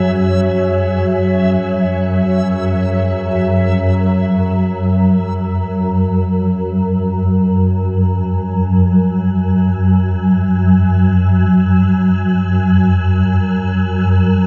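Dark ambient drone in free time, vast and ominous, cut from a longer piece and set in a huge, wet reverb with a dark production. A deep, moody pad holds a sustained F#sus2 chord with chorus and shimmer reverb, while a bright, reversed swelling texture on E5 drifts beside it with shimmer of its own. The pad falls away at 3.3 s and the texture just after, at 3.4 s, leaving the up-front swarming drone, tense, detuned and granular with a moving notch, to evolve alone until 14.5 s.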